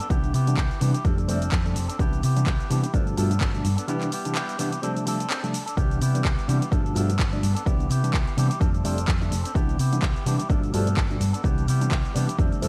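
This joyful, sunny stretch of filtered disco house opens on an electric guitar riff run through an envelope filter, dark, clean and compressed, alongside a house drum kit of overdriven handclaps, bright hats and shaker, with a barely audible egg shaker in the small-room background. Within a fraction of a second a punchy, up-front analog kick arrives with a round, dark hollow-body bass, while a worn, slightly out-of-tune tine electric piano adds mellow, lightly overdriven chords through a phaser, as if heard through built-in speakers. The harmony cycles through Cmaj7, F6, Cmaj7 and G9 over a swung 4/4 groove, with a break between 3.9 and 5.8 seconds. Sidechain pumping breathes through the guitar, piano, bass and kit percussion, and a low-pass filter softens the guitar, piano and bass. Cassette tape coloring on several parts and a digital ambience give it the hazy feel of a home tape recording, cut from a longer piece.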